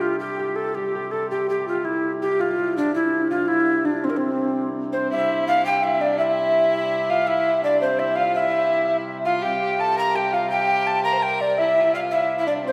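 Rustic and festive, this brief cut from a longer medieval dance moves in 6/8 with a straight feel. Up front, a breathy tenor recorder carries the melody with a wooden, mellow tone, its tongued notes marked by a little chiff, a touch of vibrato, rolled-off highs and a slightly unsteady line. Behind it, a concert harp plays a ringing, fingerpicked second line that sits in the background, while a hand-pumped harmonium holds a reedy, nasal drone in the low register that seems to breathe beneath the tune. At about 4.9 seconds a single bowed fiddle joins with a second line, its rich, smooth and even tone lightly touched with vibrato. The whole ensemble rings out in a church-like space, with a long, wet reverb that lends the dance a resonant, hall-filled glow.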